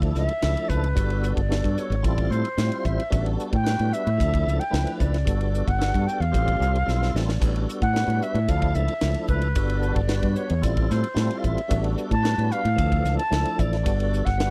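A straight 4/4 groove at 112 BPM drives this bright, funky electric jazz fusion excerpt: a crisp, polished drum kit with a punchy kick and high-tuned snare sits up front beside a direct fingered electric bass, while a full tonewheel organ turns through a slow rotary speaker with chorus vibrato beneath a distant, airy silver flute melody that enters at 0.2 s with tongued notes and vibrato, a short drum fill arrives at 6.9 s, and the chords cycle through Dmadd9, Gmaj9, Fmaj9/A and A13sus4 in a dry, close 1970s-style studio sound.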